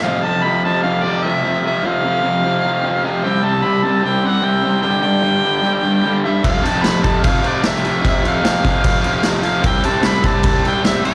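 Garage rock in a swaggering, raw mood, this short cut from a longer piece moves at a straight 4/4 stride for a small duo or trio. A raw, bright electric guitar drives the riff from the first moment, overdriven and double-tracked with a slapback echo, sitting up front in the mix. Over it, a mellow harmonica carries the melody with light vibrato and scooped notes, its vintage tone pushed through overdrive for a punchy edge. At 6.4 seconds a vintage acoustic drum kit arrives with crash cymbal, kick and snare, its gritty, saturated sound marked by dark cymbals, a rolled-off top and a punchy kick. The harmony moves through F5, C5 and G5 power chords, and the whole performance sounds like a live gig heard through the venue's PA, carrying a touch of recital-hall reverb.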